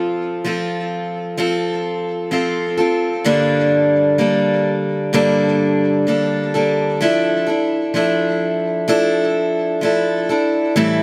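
A pop piece in D minor at a slow 64 BPM in a straight 4/4, this brief passage carries an emotional, heartbroken mood. A single picked steel-string acoustic guitar plays alone for the full 11.0 seconds, ranging from G2 to A4. Its parlour-sized tone is bright and fresh-stringed, sitting up front and treated with digital delay. The harmony moves from F to Gmadd9 at 3.3 seconds, then settles on Dmadd9/F at 7.0 seconds. A moderate, lush hall reverb with a 2.9-second decay surrounds the guitar and gives the short fragment a spacious, aching quality.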